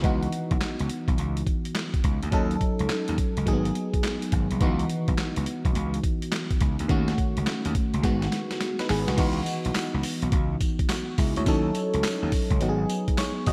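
A gritty slap bass, a sampler-style drum kit and a glassy FM electric piano open this confident, slick new jack swing excerpt together, riding a swung sixteenth-note groove in four. The overdriven bass sits punchy and bright in its low register. The compressed, pitched-down drums deliver a thumpy kick, a high-tuned snare, hi-hat, handclaps, tambourine and crash cymbal. The electric piano carries the accompaniment with a bell-like attack and a noise layer, its decaying tones treated with chorus, phaser and slapback echo. The harmony cycles through C#m11, D#m7b5 and G#m7, and a drum fill at 8.0 seconds leads into a new section at 9.2 seconds. The three parts stand up front within a concert hall reverb and a big arena sound, dusted with vinyl crackle.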